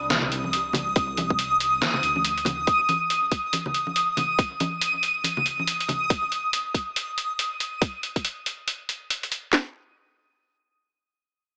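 Deep dubstep at 140 BPM in C minor with a dark, meditative half-time swing, opening on a rumbling, detuned saw bass under a filter sweep until 2.7 seconds and a reversed, dreamy granular texture with built-in reverb, while bright close congas with dub echo, a gritty pitched-down trip hop sampler-style kit and an up-front garage kit with tight kick, cracking snare and handclaps carry a Cmadd9 groove in a spring-reverb space with a small-speaker sound, before the chords drop out at 9.5 seconds.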